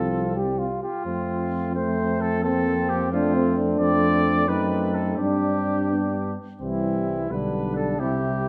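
A straight 6/8 pulse carries this brief classical brass quintet passage, cut from a longer piece, in a noble and triumphant mood. The trumpet leads the melody with light vibrato and a soft attack, sounding distant and roomy, while the warm flugelhorn traces a second line beneath it. The mellow French horn, with a vintage character, and the clear euphonium, touched with light vibrato, sit in the background as accompaniment, and the tuba, with vibrato and a similar sense of space, anchors the bass up front. The harmony moves from F through Fadd11 and F#dim7 to Gsus4 and G, and a new section begins at 6.6 seconds on C before settling onto G/B. A moderate scoring-stage reverb and a dark production give the ensemble a broad, stately glow.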